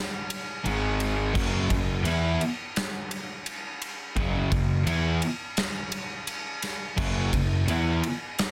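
Quiet-loud alternative rock at 85 BPM in straight 4/4, this short, angsty and dark fragment opens with a big, airy acoustic drum kit at 0.3 seconds, its punchy kick, medium-tuned snare, ride and crash cymbals sitting up front in a polished sound. At 0.6 seconds an overdriven semi-hollow guitar adds a hollow-bodied layer in the background, and from 0.7 seconds a thick, distorted fuzz guitar and a growly, overdriven fuzz bass drive the riff over G#5 and F#5 power chords. Light reverb surrounds a dense, heavily limited modern master.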